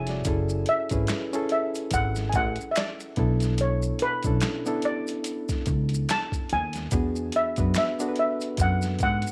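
A late-night, soulful neo-soul and R&B excerpt at 72 BPM in B dorian opens with an up-front, shimmering steel pan melody carrying a slapback echo over a barky, reedy electric piano heard through its built-in speakers, a woody, dark pizzicato upright bass, a gritty, compressed boom bap sampler-style kit with thumpy kick, hi-hat, snare and handclaps, and close, dry maracas and finger snaps, all swinging gently on the 16ths in a small room through F#m9, Bm11 and E9.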